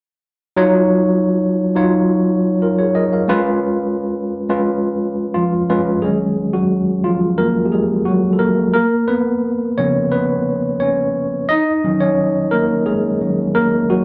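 A wet studio ambience with the feel of a live room frames this bittersweet, smooth soul excerpt in straight 4/4, where a worn, slightly out-of-tune tine electric piano, lightly overdriven through its built-in speakers and set up front, enters at 0.6 s moving between Ebm9 and Db7 before taking a solo from 6.0 s that settles on Ebm7 by 11.5 s.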